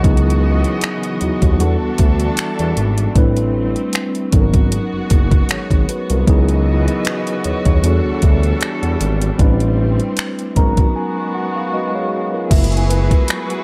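A mellow tine electric piano opens this longing, sensual contemporary R&B excerpt, joined from the start by a bowed studio string section holding sustained chords with vibrato and a smooth top, a nasal, detuned synth bass up front, and an electronic drum kit with a knocking kick, metallic hats, finger snaps and crash cymbal. The clean keys sound as if heard through built-in speakers, moving through lush minor eleventh chords that cycle from C#m11 through Em11, Am11 and G#m11 with a gently swung feel. The bass pairs a fast attack with sustained, vibrato-tinged notes, while the tape-colored kit sits prominently in the mix. At 10.2 seconds the electric piano plays a fill that carries through a break, and at 12.5 seconds it takes a short solo over F#m11 as a bell-like, slightly out-of-tune celesta enters in the background with delay. A digital ambience surrounds the whole arrangement.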